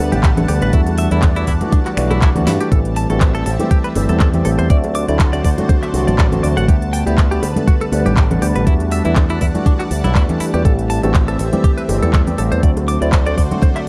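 A dark, dry production frames this sensual, sleek nu-disco excerpt at 121 BPM in A dorian with a swung sixteenth feel, where a thumpy, tape-warm electronic kick sits up front beside a punchy picked electric bass with an envelope filter that pumps under sidechain, as do a clean tine electric piano through analog delay and a lush, detuned sawtooth unison pad with chorus and phaser; a bright, twangy direct-recorded electric guitar riff with subtle chorus and delay, a layered pop drum kit of finger snaps, handclaps, crisp hats and a fat snare with a fill at 2.5 s, and soft-handed, ringing bongos and congas in the background ride a cycle of Gmaj9, Em11, Am7 and D7.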